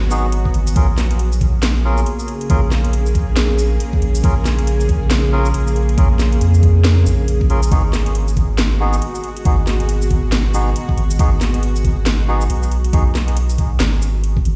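A deep, round sub bass sits up front in this brooding, dark fragment of deep dubstep at 138 BPM in Bb phrygian, felt in half-time with swung 16ths, beside a knocking, tape-warm electronic kick, while a garage kit of cracking snare, metallic hats, handclaps and shaker carries small-room ambience, a tense, string-like drone with vibrato sustains Abm7 and Bbm7 chords in its own reverb, and a reedy, breathy melodica drops stabs through dub echo until 13.0 s, the whole cut sounding as if played on a big sound system in a bare stone room.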